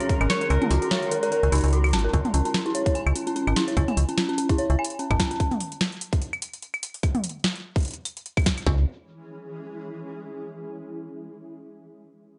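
A twangy electric guitar melody with subtle chorus and tape echo opens over a cloudy granular pad on D#m7, eerie detuned bell arpeggios and a faint flickering grainy texture, while two up-front drum parts, a tape-warm electro machine with metallic hats and a glitchy kit whose kick drops out from 0.5 to 2.1 s, drive this intricate, melancholic IDM cut at 147 BPM with a 16th-note swing, joined by a tube-saturated metallic FM bass, before the pad returns alone on C#m at 9.1 s and holds until the close at 10.3 s.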